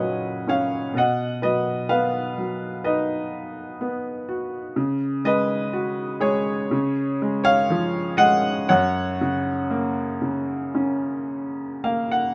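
This is a lyrical classical piece for solo piano, a short excerpt cut from a longer work, with a peaceful, warm mood and a slow, rubato feel in 4/4. A clear upright piano carries everything on its own, ranging from F#2 up to F#5 across the full 12.3 seconds. Its woody tone sits up front, captured by close, detailed microphones in a dry room with little reverb. The harmony moves gently from F# to B, then through C#sus4 and C#add9 before settling back on F# at 8.7 seconds. Near the close, the piano adds a brief fill starting at 11.3 seconds.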